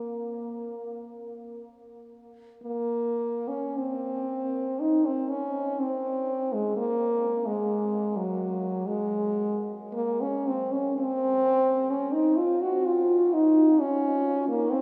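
Classical solo for unaccompanied French horn, mournful and yearning, moving freely in rubato at a slow 35 to 66 BPM in 4/4, tuned to A4 = 442 Hz. The mellow horn sits up front with a soft attack, singing between Gb3 and Gb4 through a brief opening phrase before a longer passage begins at 2.6 seconds and runs to 14.8 seconds. A huge, wet reverb of about 9.1 seconds places the horn in a vast, echoing space, and the clip is cut from a longer piece.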